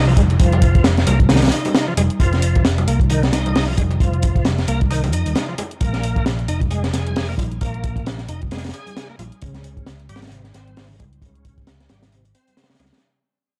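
A swung 133 BPM breakbeat groove in 4/4 sets a swaggering, funky mood, driven by a crunchy, saturated drum kit with a punchy kick and high-tuned snare sitting up front, layered with a produced electronic hi-hat and ringing congas in the background. A picked electric bass anchors the low end with an amped tone, while a bright, shouting tonewheel organ riff with key click, chorus vibrato, slow rotary speaker and tape echo carries the F7 to Bb to Db harmony. A very quiet electronic downlifter opens the first 2.2 seconds, and the whole fragment of a longer piece fades out in a dry, gritty small-room recording tuned to A4 = 436 Hz.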